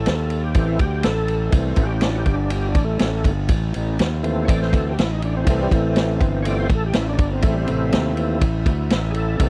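Heavy and gritty, this short excerpt of blues rock and southern rock power-trio music moves at 122 BPM in a straight 4/4, resting on A minor throughout. An overdriven tonewheel organ takes the solo spot with thick, sustained chords colored by chorus vibrato and a slow rotary speaker, while a growly, fuzz-soaked fingered electric bass sits up front beside it. A vintage acoustic drum kit enters at 0.1 seconds with a punchy kick, medium-tuned snare and dark ride cymbal, all captured in a dry, close 1970s-style studio sound.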